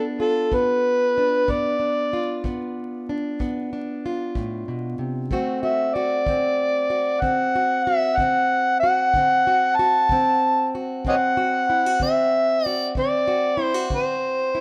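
An overdriven, amplified harmonica carries the melody up front in this laid-back, soulful acoustic country blues excerpt, its gritty tone marked by light vibrato, tongue slaps and scooped notes in a jazz-inflected solo. Beneath it, a woody fingerpicked steel-string acoustic guitar with old strings sits close in the mix, moving from G7 to D7 at 5.3 seconds, while a tight, natural kick drum with brushes enters at 0.5 seconds. The slow 12/8 pulse at 63 BPM settles into a small room with light reverb, and vinyl crackle gives it the rough feel of a home demo.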